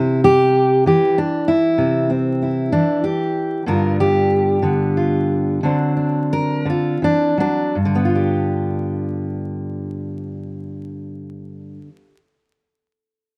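Vinyl crackle and light reverb frame this outdoor recording, which carries an open-air feel rather than the sound of a room. It is an acoustic country blues in G mixolydian, a gritty, laid-back piece in a slow 12/8 at roughly 53-64 BPM counted in dotted quarters, cut from a longer performance. A fingerpicked steel-string dreadnought guitar plays alone throughout, its tone dark and full-bodied, sitting up front and ranging from G2 to Bb4. The harmony moves from C to G7 and then D7 before settling back on G7 at 7.7 seconds, where a second section begins. The tempo slows between 2.4 and 7.7 seconds, giving the opening passage an unhurried, drawn-out quality before the short closing stretch.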